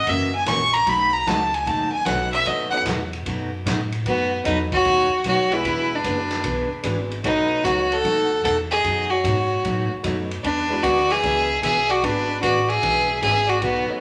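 Down-home and playful, this western swing excerpt moves at 151 BPM in B mixolydian with a swung feel, opening on a clear, smooth fiddle solo over woody, thumpy pizzicato upright bass, bright dreadnought acoustic guitar with audible finger squeak, and a distant, roomy big-band drum kit with a boomy kick. A detuned, jangly honky-tonk upright piano slips in at 2.1 seconds in the background, and at 4.1 seconds a second, more intense fiddle takes the melody while the first, still up front, carries on as a second line. The whole band sits in a large, wet studio reverb, with chords moving between B9 and E9.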